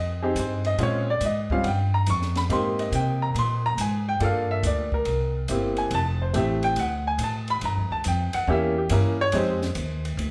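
A clear baby grand piano carries the melody and solos up front over a woody, pizzicato upright bass from the first moment of this cool, swinging jazz piano trio cut in F minor at 140 BPM, with a compact, dry cocktail drum kit of dark cymbals, high-tuned snare and punchy kick joining at 0.4 seconds, the trio playing live together in one room under a moderate large-studio reverb.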